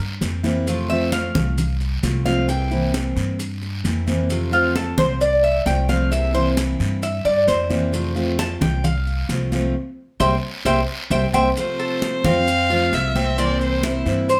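This is a sunny, danceable slice of Cuban son and guajira, cut from a longer piece and set in a straight four-beat groove. A bright, metallic Cuban tres with doubled strings spins picked arpeggios up front from 0.9 seconds, carrying a solo over the steady alternation between C7 and F. Beneath it, a woody, thumpy upright bass holds the low end, and a full-bodied jumbo steel-string guitar adds picked accompaniment, complete with audible finger squeak. Damped, high-tuned congas sit in the background with a thick-skinned tone, joined by a raspy guiro and grainy, vintage-sounding maracas. After a band accent at 9.7 seconds, a warm, expressive bowed violin enters at 11.6 seconds, singing a short melody with vibrato, soft attacks and portamento, wrapped in plate reverb. The whole ensemble sits in a wet studio reverb that gives it a lively sense of space.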